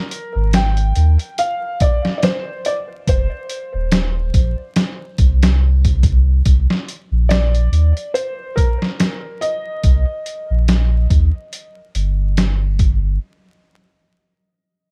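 A soft, felt-muted upright piano with tape echo opens this brooding, hypnotic trip hop excerpt in C minor at 71 BPM with a light 16th-note swing, joined almost at once by a gritty, pitched-down sampler-style kit of thumpy kick, medium-tuned snare and hi-hat, plus a deep, round sine sub bass sitting up front over a bed of vinyl crackle, as the chords settle onto Cm7 at 6.5 seconds and the piano falls away at 11.1 seconds while the bass holds on until 13.2 seconds.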